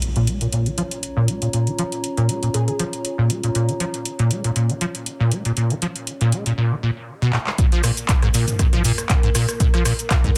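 A squelchy, resonant acid bass built from a sawtooth drives this trippy, gritty acid house excerpt in Bb minor at 119 BPM, its riff running up front from 0.2 seconds with tube saturation, ensemble chorus, dub echo and a filter sweep, all pumping against the sidechain. An electronic impact opens the clip, and an electro analog drum machine lays down handclaps, metallic hats, rim clicks, shaker and toms with a 16th-note swing and a small-room character. Behind it, a deep, detuned analog pad holds moody Bbm chords with chorus and sidechain pumping, while a warbling, nostalgic tape-like pad adds lo-fi texture with its own built-in reverb until 6.6 seconds. A glassy, crystalline wavetable pluck sounds a single brief note with dub echo in the background. After a drum fill, the drop at 7.6 seconds brings in a dry, punchy electronic kick up front as the harmony falls away, all sealed in a dense, heavily limited modern master with moderate studio reverb.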